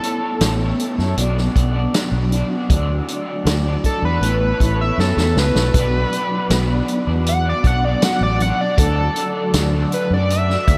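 At a straight, unhurried 79 BPM in 4/4, this trippy, mysterious psychedelic rock fragment in B minor, cut from a longer piece, sets a screaming, gritty synth lead soloing with distortion, delay and vibrato over a dark, slightly broken-up double-tracked guitar riff with harmonic tremolo, a round overdriven fingered bass entering at 0.4 seconds, and a vintage drum kit with a tight kick and rolled-off top that plays a fill at 5.0 seconds, all bathed in a huge, dreamy reverb as the chords move through Aadd9, Bm and D.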